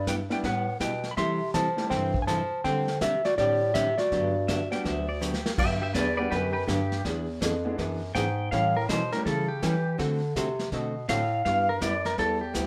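A clean, dark lap steel guitar carries the melody up front in this cheerful, down-home western swing excerpt, sliding through the opening bars in G major before it stops at 5.2 s. Underneath, a breathy bass clarinet plays the bass line with vibrato and scooped notes in a punchy jazz style, while a hollow-body archtop guitar, picked and miked through an amplifier, and a vintage brush kit with dark cymbals and a rolled-off top keep the 163 BPM swing moving. A brilliant, woody upright piano adds accompaniment in two short stretches. At 4.5 s a twangy pedal steel guitar enters, played with fingerpicks, compressed and shaped with volume swells, and after a drum fill it takes a solo from 5.6 s to the end over chords moving through E7, A7 and D7 back to G6. The band sounds as if it is playing live in one room, with a wet studio reverb around the parts.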